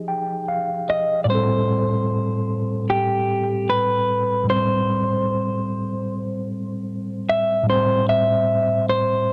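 A dry, gritty hardware recording in a small room frames this hazy, nostalgic hip hop fragment. A mellow tine electric piano, heard through built-in speakers with cassette tape coloring and a low-pass filter, opens with a fill over Fm9 before moving to Am7 at 1.3 seconds, while an up-front, fingered clean electric guitar, compressed and run through a low-pass filter and analog delay, carries the melody over a swung sixteenth-note feel.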